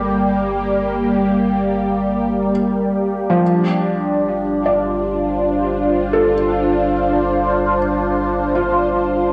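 Melancholic and reflective, this ambient excerpt drifts on a smooth, detuned sawtooth pad with chorus and cassette tape coloring, sitting up front while a felt-muted upright piano plays intimate, mellow arpeggios with audible action noise, short sustain, tape grain and analog delay. Beneath them a round, dark analog bass holds a deep G1, and an evolving pulse-width-modulated drone with chorus and tape hums in the background. The harmony moves from Gm to Dm7/G at 3.4 seconds, all bathed in a wet spring reverb that gives the home cassette recording a hazy, nostalgic glow.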